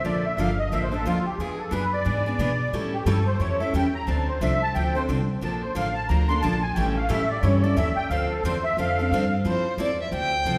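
A reverberant hall sound, with a long 1.8-second decay, surrounds this brief, fiery fragment of acoustic string swing in the jazz manouche tradition, taken at a brisk 179 BPM in 4/4 with a swung feel in D minor. A reedy musette accordion, shimmering and vintage in tone with a band-limited edge, takes a virtuosic solo for the first 9.4 seconds. Beneath it, a bright picked steel-string guitar with audible finger squeak comps through changes such as Bbmaj7, E7, A7 and Dm7. A woody, thumpy gut-string upright bass plucks a dark low line. At 9.5 seconds, as the harmony moves to Fmaj7, a single bowed violin enters with the melody, singing with vibrato, soft attacks and expressive portamento. Every instrument sits up front in the mix.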